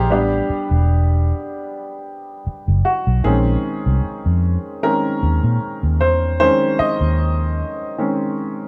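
A clear, slightly worn grand piano takes the lead through this soulful, late-night neo-soul R&B passage at 76 BPM with a light sixteenth-note swing, moving from a rootless A9sus4 to Bbm11 at 3.2 seconds over a dark, round, foam-muted electric bass that sits punchy and up front until 7.6 seconds, all captured as a band playing live in one room with moderate studio reverb.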